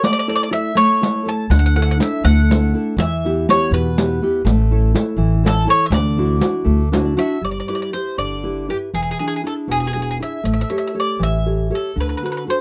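A lilting 6/8 sway gives this Italian folk serenade its rocking, unhurried pulse, with a sunny, romantic mood throughout. The bowl-back mandolin carries the melody up front, its picked double strings ringing bright, while a fingerpicked nylon-string guitar supplies a full-bodied, deep classical accompaniment and steps forward with a short fill at 6.7 seconds. A pizzicato upright bass on steel strings enters at 1.5 seconds, woody and thumpy, sitting slightly louder than the other parts. The riq adds hard-handed jingles with a compressed, saturated edge until it drops out at 7.2 seconds, just as the tune moves into its second section in a new key. Suspended and added-note chords give the harmony a gentle shimmer, and the dry, close recording in a 1970s studio style keeps every instrument intimate in this excerpt from a longer piece.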